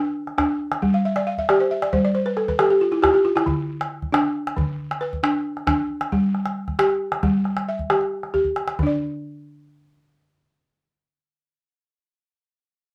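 West African traditional music for xylophone and percussion, this short passage from a longer piece moves at 90 BPM in a straight 12/8 with a hypnotic, reflective mood. The balafon carries the piece with rolling arpeggios from D3 up to F5, its woody, buzzing tone struck with rubber mallets and kept dry and up front, and it plays a fill between 0.9 and 3.5 seconds. A small calabash sits just as close, its vintage, band-limited sound joining at 0.3 seconds and stopping at 9.0 seconds after a brief drum fill. The harmony moves between Bm over D and Em over G, with stretches where the chords drop away. A light reverb gives the space a touch of air, and after the calabash falls silent the balafon plays alone into a short closing section.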